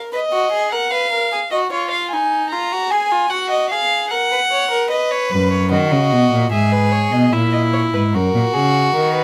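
A rich, lightly vibrato-tinged violin carries the melody of this stately, elegant baroque-style fugue for string quartet in B major at 75 BPM, with a close, nasal second violin with an airy bow playing the second line beneath it, a reedy cello entering on the bass at 5.3 seconds, and every part bowed up front in gut-string period style within a light reverb, in a short cut from a longer piece.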